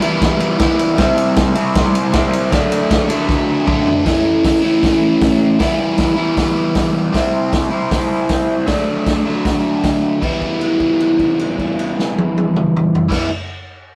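A rough rehearsal-room recording with saturated grit and a moderate studio reverb frames this raw, swaggering garage rock excerpt, cut from a longer piece, in E minor at 156 BPM in a straight 4/4. A biting, bright overdriven electric guitar, picked and double-tracked, drives the riff up front from A2 to E4, colored by a phaser. Beside it, a vintage acoustic drum kit sits forward with a punchy kick, a medium-tuned snare, dark cymbals and a rolled-off top, working across crash, ride, hi-hat and toms. A drum fill at 3.3 seconds leads into a new section where the chords move through A, Em, C and D. From 10.2 seconds a held note rings over E minor until nearly the end of the passage.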